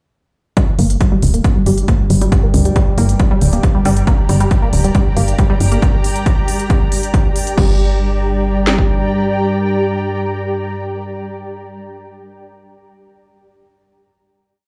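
Relentless and intense, this short piece of driving peak-time techno in straight 4/4 runs a compact groove from 0.6 seconds before settling on a final chord at 7.6 seconds. Up front, a punchy four-on-the-floor kick and cracking snare from a layered electronic drum kit lead the mix, with smooth, programmed closed and open hats and a crash sitting further back, the whole kit tape-tinged and re-recorded in a small room. An off-beat sequencer bass, built from sawtooth and square waves with ring modulation and a fast filter pluck, hits hard and decays quickly through tube saturation and sidechain pumping. Above it, a tight, detuned sawtooth synth repeats a five-step loop that drifts against the bar, colored by chorus, phaser and tape echo, while a nasal, evolving analog drone with pulse-width modulation hums beneath on a slow attack and long release. A cloudy, blurred granular pad of detuned sines fades in with slowly shifting chords and its own reverb. 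The track sounds as if played on a big sound system in a bare room, wrapped in a large studio reverb.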